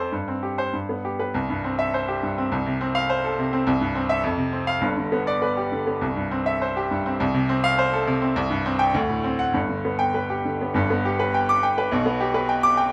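Classical virtuoso piano study in 2/4 at 96-106 BPM, sparkling and brilliant with a rubato feel, played by a bright, open baby grand piano sitting up front in light reverb, ranging from G1 to D6 and moving from C major to G major at 8.4 seconds across this short excerpt cut from a longer piece.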